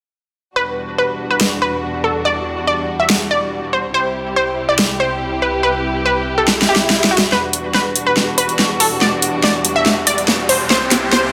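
Heavy and menacing, this half-time wobble dubstep cut moves at 142 BPM in E minor, taken from a longer piece and circling between Em7 and C. A bright, punchy, detuned sawtooth unison pluck carries the melody up front from 0.6 seconds, its fast attack and short decay trailing a dub echo and a filter sweep. Beneath it, a distant symphonic string section holds sustained bowed chords, dark and woody with vibrato. At 1.4 seconds a big-room electronic drum kit arrives, layered and produced with a huge snare and metallic hi-hats, re-recorded in a small room and placed up front. A drum fill and a background swell near 6.6 seconds open a build-up, where an electronic riser and further fills drive toward the close, all set in a lush hall reverb with a 1.7-second decay.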